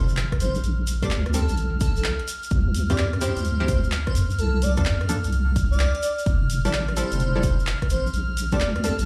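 This soulful, bouncy two-step UK garage excerpt carries a light, large studio reverb, as if played on a big sound system in a bare room, moving at 128 BPM in F major with a 66% swing on the sixteenths. A deep, wobbling bass sits up front beneath a tape-warm analog drum machine of handclaps, hi-hat and rim click, a layered punchy electronic kick, a grainy tube shaker and a very quiet impact at the opening. An airy pad with breathy, sidechain-pumped chords and a dreamy lead with vibrato and portamento float over sawtooth chord stabs that enter at 1.0 s, as the harmony moves from F through Bbmaj7, Dm11 and Csus4 to Fmaj9 and Bbmaj13.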